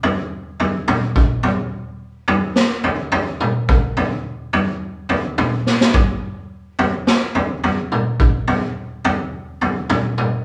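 Brooding and dark, this short rock cut at 106 BPM in a straight 4/4 half-time feel features only a raw garage drum kit of kick, snare and toms, sounding gritty and saturated with a punchy kick, medium-tuned snare and rolled-off top, sitting up front in a small room with light reverb and breaking into a drum fill at 5.7 seconds.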